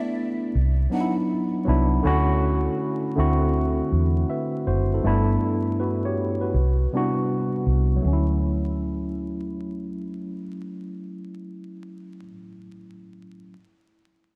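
An unhurried 80 BPM groove in 4/4 with swung sixteenths anchors this nostalgic, cosy lo-fi hip hop excerpt in D major. A worn, barky tine electric piano, slightly out of tune and heard through its built-in speakers, carries chords such as Cmaj9#11 and Dmaj7 from the start, joined at 0.6 seconds by a dark, round, foam-muted electric bass up front, while a breathy, mellow flute with tape echo appears only fleetingly at 0.9 seconds. Lush hall reverb soaks the dreamy mix, and vinyl crackle adds a vintage haze.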